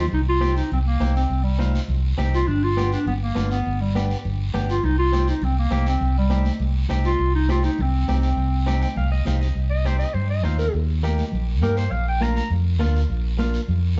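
A mellow, vintage-toned clarinet sings the melody up front over picked, twangy clean electric guitar with spring reverb and a round, dark fingered bass, while bright, high-tuned congas sit in the background and a raspy guiro scrapes along in this passionate, driving cumbia fragment. The guitar slips in a short fill at 8.7 seconds before the clarinet takes a classical-style solo from 9.6 seconds, which it carries until 12.5 seconds as the harmony moves through Eb and Bb. The sound is moderately roomy and heard from further back, with a soft, dulled top end.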